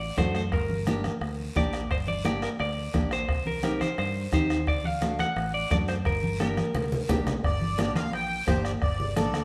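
A twangy, picked electric guitar with spring reverb carries the passionate, fiery melody of this G harmonic minor cumbia at 174 BPM until 7.2 s, over growly, punchy fingered bass, damped low-tuned congas, a soft-beater bombo, raspy guiro and bright fingerpicked nylon-string guitar, before a sweet, reedy accordion with light tremolo tuning takes an up-front solo at 7.4 s, the whole band playing live in a stone room.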